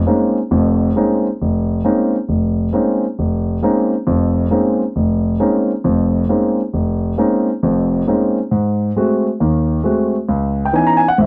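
Hypnotic and searching, this swung solo jazz piece in Bb minor at 135 BPM, cut from a longer work, sets a concert grand piano up front from 0.1 to 11.3 s, its warm tone and deep bass sounding through Bbm11, Ab7b9 and C#m9 chords, with light reverb on a dry, close 1970s-style studio sound.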